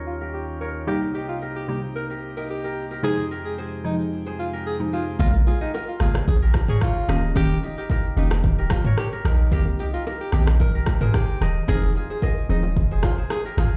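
Played through a big sound system in a bare room with large studio reverb, this hypnotic, smooth afrobeats excerpt at 111 BPM in Bb dorian opens with a full, chiffy principal-chorus pipe organ holding pumping chords, a ringing fingerpicked kora riff, a breathy, raspy alto saxophone melody with vibrato and a hollow, bouncy square pluck, before a deep, boomy 808-style bass, a gritty, tape-toned deep house kit of kick, rim click and toms, and background congas and bongos join at 5.2 seconds as the organ stops, over chords moving from Eb7 through Cm7, Fm7 and Bbm7.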